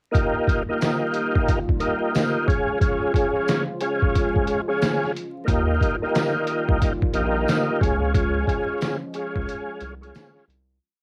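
A swung boom-bap groove at 90 BPM in 4/4 drives this confident, soulful hip hop piece, built on a sampler-style drum kit that sounds pitched down, muffled and overdriven, with a thumpy kick and backbeat snare sitting up front. A smooth tonewheel organ plays chopped chords repeated like a sampled loop, colored by chorus vibrato, a slow rotary speaker and cassette tape, moving between Ebadd9 and Db. Behind it, a moody, detuned pad holds sustained chords from 0.7 seconds, while a jingly tambourine taps off-beats from a distance, as if in a large room. At 5.5 seconds a round, deep analog bass enters with a mellow looped line. The whole hook carries a homemade cassette feel with vinyl crackle and light reverb, fading out from 8.1 seconds into a brief break at the close.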